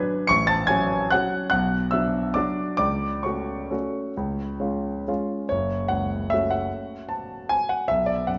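A classical piano waltz in F# minor, wistful and elegant, moving in 3/4 with a rubato feel between 126 and 159 BPM, tuned slightly high with A4 at 443 Hz. A solo grand piano carries the whole 8.4-second fragment, clear and intimate, placed up front with audible action noise that gives it a natural, close presence. Its range stretches from F#1 up to C#7, and the harmony passes from F#m/A through Bm and F#m/C# to a C# chord at 4.2 seconds before settling on F#m at 5.5 seconds, where a new section begins. The instrument sits in a wet recital hall with a reverb tail of about 1.7 seconds, while the top end is rolled off above 7.5 kHz for a soft, unbrittle sheen. Cut from a longer piece, the passage feels like a brief glimpse into a graceful, melancholy dance.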